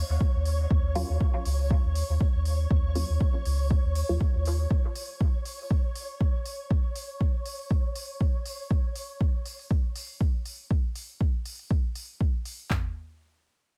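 This hazy, cavernous dub techno excerpt opens with a soft, round sub bass pumping against the sidechain, beneath a flickering, grainy granular texture that sits high and faint in its own built-in reverb. A deep house kit follows almost at once, with an up-front deep kick, handclaps and toms, while a faint electronic hi-hat adds smooth, layered hats over a gently swung sixteenth-note feel. A muted, detuned chord stab with a short pluck cuts in briefly, treated with a phaser, dub echo, sidechain pumping and a filter sweep, all over a single open seventh chord. At 4.7 seconds the bass drops out and the harmony falls away, and the texture ends at 8.7 seconds, leaving the drums alone until about 12.8 seconds. Apart from the texture's own reverb, the mix is fairly dry.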